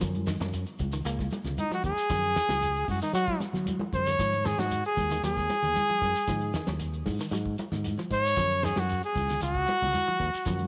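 A clear, up-front trumpet carries the melody in this hypnotic, funky afrobeat excerpt, entering at 1.6 seconds with a punchy, close-miked pop-style solo shaded by light vibrato. Underneath, a fingered electric bass gives a round, punchy foundation that sits direct and dark in the mix, while a bright, clean semi-hollow guitar plays picked arpeggios in the background through an analog chorus. The cloth-damped drum kit sounds dry and thuddy, with a fat snare, a tight kick and a rolled-off top, and it breaks into a short fill at 3.8 seconds. High-tuned, ringing congas played with soft hands sit further back, joined by a grainy, saturated shekere. The whole band sits in a moderate echo chamber reverb, with the harmony moving from Gb5 to Ab5 and back over the straight 4/4 groove.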